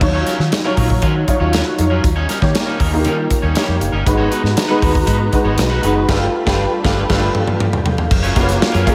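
Piano, bass, drums and a bright, twangy electric guitar open together at 118 BPM in straight 4/4, setting up an upbeat, glossy 1980s jazz-funk pop groove over a D#m9 to D#7 progression, with the clear, intimate piano carrying ensemble chorus, the slightly broken-up guitar riff treated with lush chorus, and a dark, round, foam-muted bass under a punchy, up-front kit. At 4.1 seconds a bowed string section enters behind them with smooth, vibrato-rich sustained chords as the harmony moves through G#m7 and G9. A drum fill and band accent from 6.1 to 8.1 seconds lead into an F#maj7, all framed by a lush hall reverb that gives this fragment of a longer piece a big arena sound.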